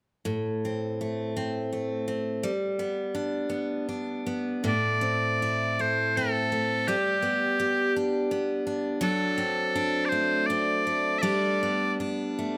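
Closely and crisply recorded in a moderate recital-hall reverb, this mournful, longing Celtic folk fragment in a loose, rubato three-four opens with a full-bodied, fresh-stringed picked steel-string acoustic guitar from 0.3 seconds, before loud, piercing bagpipes enter up front at 4.7 seconds to carry a continuous solo melody until 11.9 seconds, while the guitar's accompaniment moves from Am and G toward D7/F# and a closing Gadd9.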